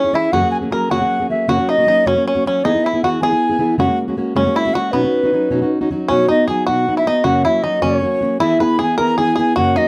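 A 6/8 Celtic jig at 104 dotted-quarter beats per minute, this cheerful, lively folk piece sits in B major and is cut from a longer performance. A bright baroque flute carries the melody with an airy, woody, straight tone and tongued notes, while a twangy bluegrass banjo, played with fingerpicks, adds a percussive second line a little lower in the mix. Underneath, a fingerpicked plugged-in steel-string acoustic guitar with a full-bodied jumbo sound sits up front, providing the accompaniment across the whole ten seconds. The harmony moves between F#add9, F#, E and Badd9, and the tune shifts into a new section at 6.1 seconds, landing on B before returning through F# and E. The production is dark and warm overall, with moderate studio reverb giving the trio a modest sense of room.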